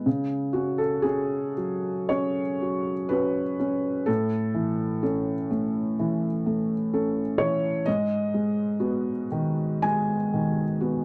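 Wistful and intimate, this short neoclassical minimalist piano piece unfolds at a slow 55-65 BPM in 4/4, with a rubato feel that lets the time breathe. A felt-muted upright piano plays alone throughout, sitting up front with a soft, boxy, mellow tone that spans from G#2 to G#5. The harmony moves from C#sus4 to A and settles on G#m7 at 7.9 seconds, and the instrument is tuned slightly high, to A4 = 441 Hz. A moderate studio reverb gives the piano a small halo of space, and the overall production is dark and warm. Cut from a longer work, the 11-second excerpt feels like a quiet, private moment.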